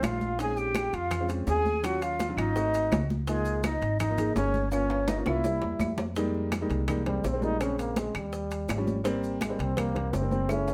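This fiery, sophisticated slice of Afro-Cuban jazz at 166 BPM opens with a clear, lightly vibratoed trombone melody in a plate reverb, shadowed by a breathy, hollow flute line with slapback echo, over a warm baby grand piano, a woody pizzicato upright bass up front, and a bed of ringing congas, metal-shell timbales, tight quiet bongos, woody claves and grainy maracas. After a drum fill from 4.7 seconds, the flute drops out at 5.9 seconds and the trombone takes a solo from 6.2 seconds. Rich extended chords carry the harmony beneath a light reverb.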